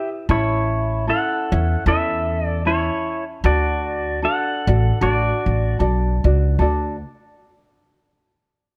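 Swung eighths in an easy 4/4 at 76 BPM carry this short, sunny and languid Hawaiian fragment in D major, moving from A to D. Up front, a clean, twangy electric pedal steel guitar sings the melody with fingerpicks, slide and volume swells until 5.8 seconds, while a thumb-plucked tenor ukulele plays a light acoustic accompaniment. A woody, thumpy upright bass, also up front, joins at 0.3 seconds with pizzicato steel strings, all set in a light reverb.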